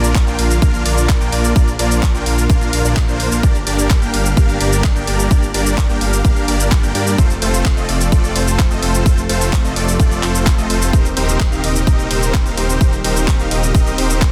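Dense, heavily limited and nearly dry, this emotional, powerful festival progressive house excerpt in G minor at 128 BPM sets huge, up-front detuned supersaw chords with tape echo over a warbling vintage pad in the background and a dark, saturated, chorused saw bass, all pumping to the sidechain through a Bb, Gm, F, Eb6 progression, while tape-warm house drums with cabasa, handclaps, hi-hat and ride cymbal, re-recorded in a large room, run throughout and a punchy, up-front electronic kick drives in from 0.2 seconds.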